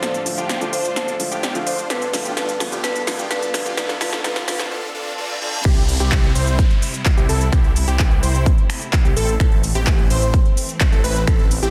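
Festival progressive house at 128 BPM in C major, triumphant and uplifting, this excerpt opens with a build-up where a mid-forward marimba melody and an intimate grand piano with audible action noise, both carrying digital delay, sit over lush, pumping symphonic strings in the background, a phased, euphoric supersaw riff, and a big-room kit of crisp hats, handclaps, finger snaps, shaker and a punchy, softly clipped snare running a drum fill, while very quiet risers and a reverse cymbal lead toward the drop. At 5.7 seconds the drop lands with an up-front punchy electronic kick, a thick, beating, menacing detuned saw bass, and a catchy plucky unison lead playing arpeggios with vintage 12-bit grit, a moving notch and vibrato, the bass and lead both pumping under sidechain. The mix is dense and heavily limited with light reverb, moving from Dm and G in the build to C and Am in the drop.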